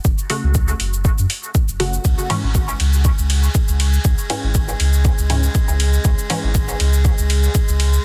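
Deep and meditative, this dub techno excerpt moves at 120 BPM with a light 16th-note swing over F#m and C#m, built on a round, soft sub bass pumping under an up-front electronic kick, a tape-warm deep house kit of metallic hats, cabasa and ride in a small room, a muted, wave-folded chord stab treated with phaser and dub echo from 0.3 to 6.5 seconds, and a glassy, chorused texture of drifting overtones that arrives at 3.0 seconds, all within a dense, heavily limited modern master.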